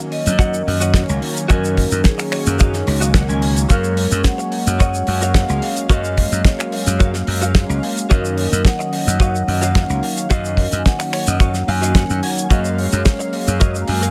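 Nu-disco with a cosmic, sensual mood, this short cut from a longer piece rides a steady straight feel. A tight, up-front kick drum and a damped 70s kit of finger snaps, hi-hat, shaker and fat snare sit dry and polished alongside a bright, punchy slap bass. Dark, detuned synth brass with chorus and ring modulation holds the accompaniment, while a compressed clean electric guitar picks a riff with fills at 2.0 and 10.9 seconds, and a ringing, metallic vibraphone carries the melody through tape echo in a boxy small room.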